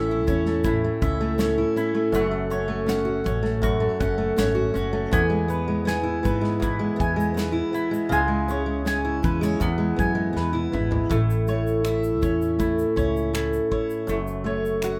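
Acoustic pop in A major at a relaxed 80 BPM in straight 4/4, this heartfelt, sunny passage is cut from a longer piece. A fingerpicked steel-string acoustic guitar sits up front with a dark, auditorium-sized body and audible finger squeak, carrying the accompaniment through the chords A, F#m, E and C#m. A mandolin plays woody, double-strung arpeggios above it, while a mellow fretless electric bass adds a round, dark low end, heard direct and amped. A natural country drum kit enters at 0.3 s with a punchy kick, medium-tuned snare, toms, shaker and finger snaps in a small-room sound, and a drum fill from 10.4 s leads into a new section at 11.1 s that returns to A and F#m. Moderate studio ambience lends the whole an intimate, close-knit feel.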